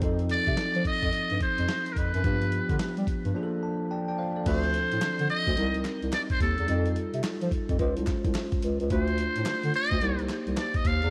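Bouncy and confident, this new jack swing cut from a longer piece rides a swung sixteenth-note groove in 4/4. A sampler-style soul drum kit sits at the bottom with a thumpy kick, medium-tuned snare, hi-hat and crash, its compressed, gritty sound carrying cassette tape coloring and re-recorded in a small room. A breathy bass clarinet takes the bass line with a dark, close-miked tone, light vibrato and scooped notes, while a bell-like tine electric piano comps up front with a clean, direct sparkle. From 0.3 seconds a trumpet with a metal mute carries the melody, buzzy, thin and raspy, with growling, scooped vintage jazz phrasing also tinted by cassette tape. At 3.3 seconds a break opens for an electric piano fill, and after the chords move on, very quiet, crisp group handclaps join from 5.0 seconds. The whole mix has the light reverb and small-room ambience of a home cassette recording.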